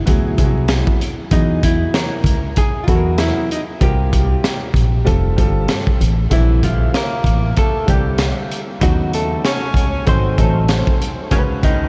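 A crunchy breakbeat kit with a punchy kick, a high-tuned snare and hi-hat swings its sixteenths at 96 BPM in 4/4, sitting up front with a saturated, gritty grain and a rolled-off top beneath a vinyl crackle. This nocturnal, smoky jazz-hop cut from a longer piece sets a woody, thumpy pizzicato upright bass against the beat, while a concert grand piano supplies boxy accompaniment with deep lows and long sustain. A dark, clean hollow-body electric guitar carries the picked, compressed melody through tape echo. At 6.3 seconds a breathy tenor saxophone enters in the background with a mellow subtone, vibrato and scooped notes, its second line also treated with tape echo. The harmony drifts from D9 through Eadd9, F, A#maj7 and B9 to G#7b9 before settling on C#5 near 11.3 seconds. A huge ambient reverb soaks the mix, giving the whole a dreamy, late-night haze.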